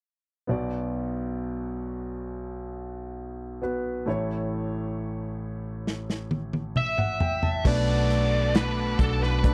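In a straight 4/4 feel, this longing, emotional pop ballad opens at 0.5 s with a clear, intimate concert grand piano, its action noise audible and its deep bass natural as it moves from B minor to A. A small-room acoustic drum kit enters with a fill at 5.9 s, its punchy kick and medium-tuned snare up front, and soon a dark, bluesy lead guitar carries the melody through distortion and slapback echo. A very quiet, compressed clean guitar slips in at 7.6 s with picked arpeggios. At 7.7 s the harmony lands on Bm7 as a round, amped hollow-body bass joins, along with lush bowed strings with vibrato in the background and a faint electronic downlifter, all within a dry, close 1970s-style studio sound.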